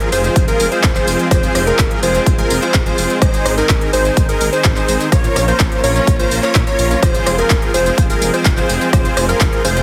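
This excerpt opens with a rich bowed string section holding sustained chords in the background, a punchy, catchy plucky lead playing arpeggios, and a huge, dense supersaw riff, all pumping against the sidechain and touched with tape echo on the lead and supersaw, while a big-room dance kit brings crisp hats, handclaps, rim clicks and tambourine. A thick, menacing detuned saw bass enters at 0.1 seconds, and a punchy electronic kick sits up front from 0.4 to 9.5 seconds, driving this powerful, euphoric festival progressive house passage at 126 BPM in F minor over a Fm, Ab, Bbm chord cycle. Light reverb and heavy multiband compression give the mix a loud, radio-ready sheen.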